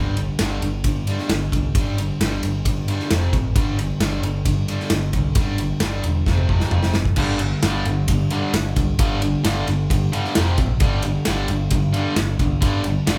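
A sludgy, overdriven guitar riff sits up front in this menacing, heavy hard rock excerpt at 132 BPM in straight 4/4, grinding between G5 and F5 power chords over a growly, punchy picked bass. An acoustic rock kit with bright cymbals, a medium-tuned snare and a hard-hitting kick drives it, throwing in a fill at 6.3 seconds before a second distorted guitar joins the riff at 7.2 seconds. The band sounds like it's playing live together in a large studio room with a moderate reverb.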